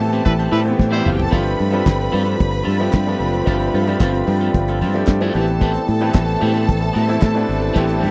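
Disco at 112 BPM with a glamorous, joyful mood: a short cut opens on a band accent and drum fill as a clear horn section punches stabs from 0.3 to 1.1 seconds, then a dark, distant French horn section holds sustained chords from 1.3 seconds over G9sus4 and back to Am9, while a damped 70s drum kit with fat snare, tight kick and handclaps sits up front beside a round, punchy fingered bass, a clear baby grand piano with audible action noise, a twangy, slightly broken-up electric guitar through phaser, and a lush violin section bowing a second line, all in a dry, close 1970s-style studio sound.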